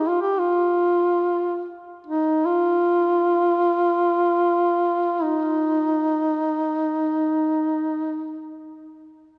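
A mellow solo duduk sits up front from the start, its vibrato and scooped notes carrying a solemn, longing Caucasian folk lament through a long church reverb and a dark production until it stops at 8.5 seconds, in a short fragment cut from a longer piece.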